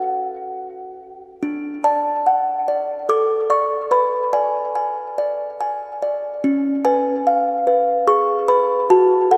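Bathed in the long, wet reverb of a concert hall, this brief, rubato excerpt of a classical lullaby in 3/4 features a solo music box, up front with tape echo, whose delicate, tinkling, slightly out-of-tune plucked tones sound small and mellow as it drifts from F#m through D, G#dim/B and C#7 in an eerie, fragile mood.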